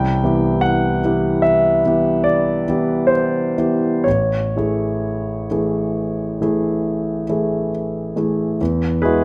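A solo concert grand piano, intimate and up front with audible action noise, deep bass and long sustain, opens a dreamy, luminous impressionist classical passage in a rubato 5/4, moving from Cmaj7 to Amaj7 at 4.1 seconds and arriving on Eadd9 at 8.6 seconds, captured by close, detailed microphones in a recital hall's moderate reverb in this 9.2-second fragment of a longer piece.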